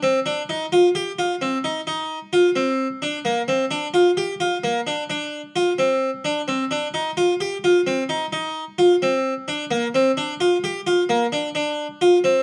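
Bright and intricate, this fragment of a progressive instrumental piece moves at 130 BPM in a straight 7/4, tuned to A4 = 444 Hz. A solo Flemish-style harpsichord with two sets of strings plays from 0.0 to 12.4 seconds, its full, plucked tone sitting up front between Bb3 and G4 and trailed by a slapback echo. The outdoor recording carries only light reverb and a dry, open-air character.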